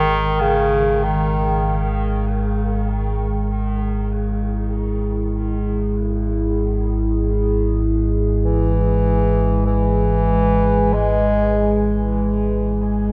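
A deep, rumbling drone and a moody analog pad with chorus and phaser open this desolate, unsettling dark ambient excerpt in free time, as a clear, up-front bass clarinet with tape echo sings a melody until 11.9 seconds, an eerie, inharmonic detuned synth bell flickers very quietly through its arpeggios until 6.0 seconds, and a filter sweep moves across the ominous drone, all bathed in a cavernous cathedral reverb over chords moving from G#5 to E and back to G#5.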